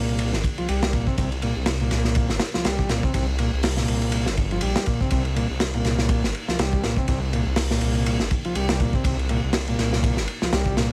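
A crunchy breakbeat kit sits up front in this raw, gritty breaks excerpt, its punchy kick, medium-tuned snare, hi-hat and dark ride cymbal coming through saturated, gritty and warm with a rolled-off top in a small room. The drums enter at 0.1 seconds and carry a gentle swing on the sixteenths in a steady four. Underneath, a detuned saw bass growls low, thick and menacing, its beating, tube-saturated tone sustaining with a fast attack. A vintage combo organ plays a riff over a single dominant-seventh harmony, its light vibrato roughened by overdrive and lo-fi sampler grit and trailed by delay. Studio reverb and a bed of vinyl crackle wrap the mix in a worn, crate-dug atmosphere across the clip's roughly 10.9 seconds.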